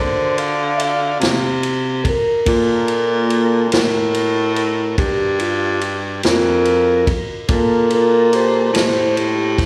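A mellow, flute-like tonewheel organ holds sustained Gm7 chords through a slow rotary speaker as the featured voice, while a baritone saxophone with vibrato and a soft attack carries the bass line and a vintage drum kit (punchy kick, medium-tuned snare, ride cymbal, rolled-off top) joins at 0.4 seconds in this soulful, smoky slow blues excerpt in G minor at 48 BPM in 12/8, wrapped in a wet scoring-stage reverb with a big arena sound.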